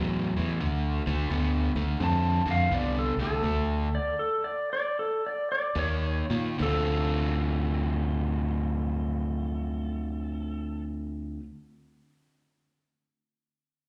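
A crunchy, overdriven electric guitar and a round, dark fingered bass open together at 0.0 s, the guitar picking a bright riff with slapback echo while the bass sits up front beneath it. This smoky, soulful blues sits in D minor with a swung 4/4 feel, moving at roughly 70 to 87 BPM and slowing down from 0.6 to 6.6 s, with chords drifting from A5 through Dm7, D5 and Eb5 before returning to Dm7 at 6.6 s. A clean lap steel guitar enters at 2.0 s carrying the melody, its twangy slide lines shaped by volume swells and touched with slapback echo. The whole performance sounds like a live gig heard through a venue's PA, wrapped in club reverb. It is cut from a longer piece.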